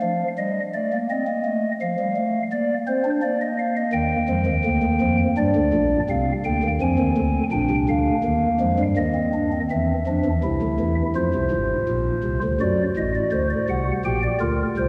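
A long, wet church reverb surrounds this recording, heard from further back in the room, as a joyful, lively baroque-style three-part fugue in Eb major unfolds at 84 BPM in a straight 4/4. A chamber organ on a stopped flute stop plays solo throughout, its soft, hollow, mellow tone touched with chiff and spanning from deep Ab1 up to Ab5. Cut from a longer piece, the music shifts into a new section at 9.7 seconds, with harmonies moving through Fm and D7 before arriving on Gm/Bb.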